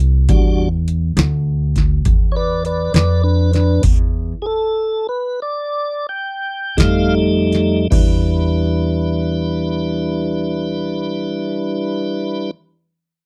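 Brooding and smoky, this slow blues excerpt moves in a 12/8 at roughly 50-68 beats per minute in E minor, cut from a longer piece. A booming analog drum machine sits up front with a deep kick, crisp snare, metallic hats and crash cymbal, its tape-warm tone carrying the groove until 8.1 seconds. Beneath it, a woody, dark upright bass plays pizzicato on steel strings in a low register, holding the bottom through the whole passage. The tonewheel organ enters at 0.3 seconds with sustained, piping chords through a slow rotary speaker, its clean, scooped voice taking the solo role over the opening stretch. The band begins slowing down around 2.6 seconds and stops between about 3.8 and 6.8 seconds, moving from Em7 to F7 and back to Em7, all captured in a dry, close studio sound with the flavor of the 1970s.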